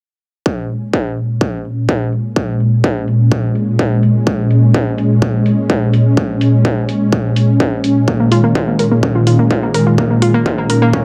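A lightly reverberant excerpt of driving, hypnotic melodic techno at 126 BPM in Bb minor opens with a smooth, detuned sawtooth pad holding sustained Bbm7 and Dbsus2/Bb chords with chorus and sidechain pumping, while a distorted, up-front electronic kick and metallic, low-pass-filtered electronic hi-hats share a filter sweep and small room ambience, and at 8.1 seconds a warbling, dusty pulse-wave pluck enters with mellow arpeggios, chorus, pumping and dub echo.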